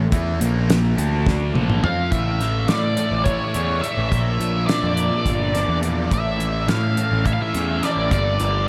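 A driving 7/8 pulse at 210 BPM counted in eighths, played straight, anchors this mysterious, trippy slice of psychedelic rock in A phrygian dominant, cut from a longer piece. A damped 70s drum kit with a fat snare and tight kick sits dry underneath hi-hat and toms, throwing a fill between 1.3 and 2.1 seconds. Up front, a thick, double-tracked fuzz guitar picks a bright, distorted riff through a phaser, while a round, overdriven fuzz bass holds the low end. From 1.8 seconds an octave-fuzz lead guitar carries a dark, picked melody through wah and distortion, trailed by diffuse ambient delay. Far beneath, a very quiet string machine lays shimmering, vintage sawtooth violin chords with a soft attack and ensemble chorus, and the whole mix is soaked in a huge, dreamy reverb with a seven-second tail.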